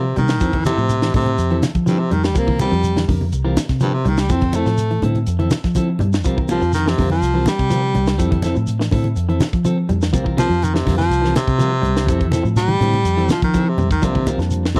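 Joyful and funky, this 124 BPM afrobeat excerpt puts a clear, forceful baritone saxophone solo up front over a round, foam-muted fingered bass, a tight funk kit with a high-tuned snare, low-tuned congas and a grainy shekere in the background, a hollow-body guitar playing arpeggios through harmonic tremolo, and a picked clean guitar adding stabs with spring reverb, as the chords alternate between Fmaj7 and C7sus4 in a dry, close 1970s-style studio sound, with a drum fill at 13.8 seconds and a barky, lightly overdriven electric piano entering at 14.0 seconds.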